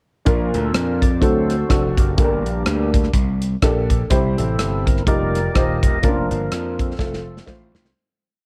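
A fat, clean tonewheel organ takes the solo throughout this short uptempo gospel piece, its sustained pad turning through a slow rotary speaker. The mood is soulful and hopeful, swinging at 125 BPM in 4/4 in Bb major as the harmony moves from Bb through D7, Gm and C to F9sus4 before settling on Bb/F and F. Beneath the organ, a gritty, overdriven slap bass sits up front with a walking and running gospel line full of slides and chromatic approach notes. A worn, woody upright piano, slightly detuned, adds push-chord accompaniment in close voicings with grace notes. The punchy acoustic drum kit drives a two-beat praise groove on hi-hat, kick, rim click and a medium-tuned snare. The whole piece plays as a breakdown with a dark, warm production and light reverb, fading out from 6.0 seconds while a drum fill arrives at 7.0 seconds.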